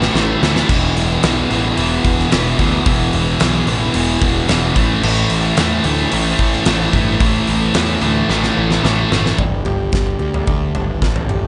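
A huge arena drum kit with a fat snare and punchy kick opens on a fill under an up-front, bright high-gain guitar riff, a dark fuzz guitar in the background, overdriven fuzz bass and a very quiet, swirling phased string machine, a dark, cathartic quiet-loud alternative rock passage that runs until another fill at 8.3 seconds gives way at 9.4 seconds to a boxy, picked swing-style acoustic guitar playing arpeggios over the bass and drums in a light, small-room ambience.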